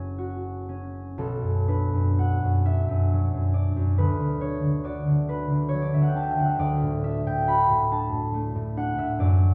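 Wistful and gentle, this brief classical solo for concert harp drifts in a rubato 6/8 at roughly 39-47 BPM in B minor, its mellow, thumb-plucked, ringing tones sitting up front and spanning F#1 to B5 as the harmony moves from an opening F# into Bm at 1.2 seconds, then Bm/D and finally D at 6.6 seconds, all bathed in a wet recital-hall reverb that places the listener further back in the room.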